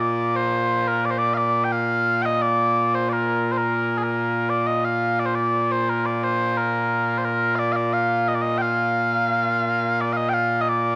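Scottish traditional pipe music in 2/4 at 87 BPM, this short cut from a longer piece carries a proud, stirring mood in B-flat major with a straight feel. A solo set of small bagpipes plays throughout the full 11.0 seconds, sitting up front with a mellow, sweet tone and a continuous sound touched with vibrato. The pipes cover a range from Bb2 up to G5, and the line moves into a new section at 4.5 seconds. The home cassette recording lends the instrument a tape-worn character, and a wet spring reverb with a 1.4-second tail surrounds it with a resonant, homely ambience. The tuning sits slightly high, with A pitched at 441 Hz.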